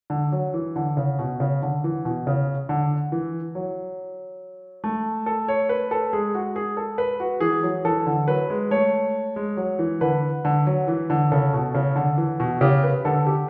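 A wet recital hall reverb with a 1.4-second decay frames this short recording, heard from further back in the room, while the grand piano itself sounds present and polished. It is a classical, baroque-style two-part invention for solo piano in 6/8, moving at 46 beats per minute counted in dotted quarters with a straight feel. The mood is lively and joyful, and the piano plays throughout, from 0.1 to 13.5 seconds, ranging from B2 up to C#5. The harmony settles onto A at 4.8 seconds, then passes through G#m7, E7, A, D and back to A before closing on A7/C#. The passage is cut from a longer piece.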